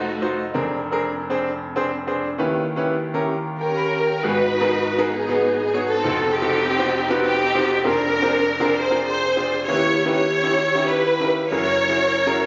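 Swinging at 132 BPM in 4/4, this fervent, soulful gospel excerpt sets a bright, brilliant grand piano with long sustain and a vintage sheen beneath a dark, lush, bowed string section whose vibrato-rich melody is heard briefly at the opening and then returns at 3.6 seconds, all in a phone recording of a recital hall bathed in heavy reverb and dulled at the top end, with altered dominant chords such as F7b9 and D#7b9b13 coloring the harmony.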